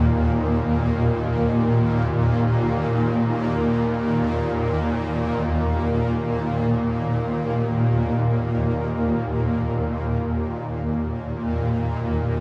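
In free time, this meditative, spacious fragment of world meditation music rests on a lone shimmering ambient pad in a low register. Its ethereal, sine-like tone carries an octave-up granular sparkle, slow attack and long release, with chorus and built-in reverb, and it sits bright and up front against a dark production and a wet, stage-like reverb for the full 12.4 seconds.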